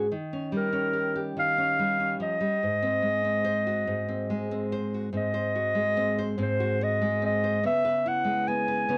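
A dry, close recording with a 1970s studio character and a light touch of reverb frames this short fragment of a longer piece, an acoustic folk-pop ballad in a slow 3/4 at 72 BPM. The mood is heartbroken and intimate. A dark, full-bodied nylon-string guitar opens the track alone, fingerpicked in a deep classical manner and sitting up front. At 0.6 seconds a clarinet enters with the solo melody, punchy and warm in a classical style, placed up front and a little more prominent than the guitar. The harmony moves from D#7 to G#7 and later settles on C#m7, with the passage shifting into a new section at 5.1 seconds before it cuts off at 9.0 seconds.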